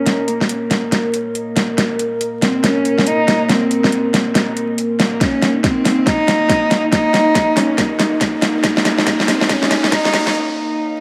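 Heavy and meditative, this deep dubstep excerpt at 140 BPM in Bb minor, half-time with a swung feel, builds over 11.0 seconds as an intimate bowed cello with light vibrato and an airy sul tasto tone carries the melody through a low-pass filter sweep and dub echo, over a dark, detuned analog pad of sustained chorused chords, an up-front drum kit of huge snare and metallic hats playing a fill, a knocking kick entering at 5.2 seconds, and a very quiet riser from 7.7 seconds, all steeped in springy reverb and vinyl crackle before a brief break at 10.4 seconds.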